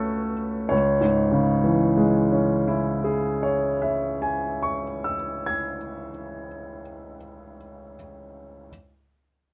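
A melancholic, yearning romantic nocturne for solo piano in C# minor, this brief fragment of a longer piece drifts in rubato at 31 BPM in 3/4, as an intimate, up-front baby grand spanning C#2 to G#6 moves from F#m/C# to C#m at 0.7 seconds, its clear tone ringing with long sustain and audible action noise in a close, detailed, nearly dry recording.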